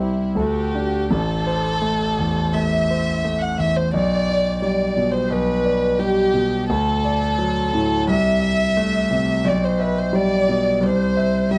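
A dark, warm production with moderate studio reverb frames this fragile, melancholic neoclassical fragment at 87 BPM in a rubato 4/4, tuned to A4 = 436 Hz, where a natural-sounding concert grand with deep bass carries the accompaniment up front while an intimate, close chamber violin section sings the melody sul tasto with soft attacks and light vibrato, moving through chords such as D, Am and G/B before settling on C near 10.8 seconds.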